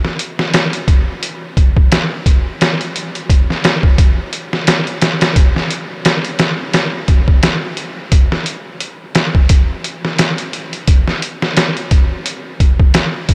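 A sampler-style trip hop drum kit opens the recording and carries it alone from 0.0 to 13.3 seconds, setting a dark, cinematic mood. The beat sits at 87 BPM in 4/4, with a 56% swing on the sixteenths giving the groove a lazy, loping feel. The kit is pitched down and compressed, with a muffled character, a thumpy kick, a medium-tuned snare and hi-hat filling out the pattern. Placed up front in the mix, the drums carry a small room ambience and a light reverb. This short passage is cut from a longer piece and holds a single section throughout.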